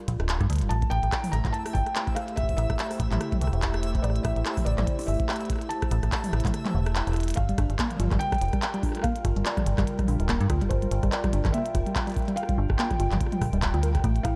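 A hollow, flute-like pad opens this melancholic, glitchy IDM excerpt at 144 BPM, joined at once by an up-front metallic FM bass, a deep tape-toned electronic kick and an overdriven kit of clicky hats, handclaps, rim clicks and toms, all swung on the 16ths. A felt-muted upright piano carries the melody with audible action noise, sampler grit and delay, while a faint twinkling granular shimmer hovers from 1.4 seconds. The kick drops out at 6.5 seconds before a worn, slightly out-of-tune tine electric piano takes up delayed arpeggios at 7.5 seconds, all within a dark, lightly reverberant mix.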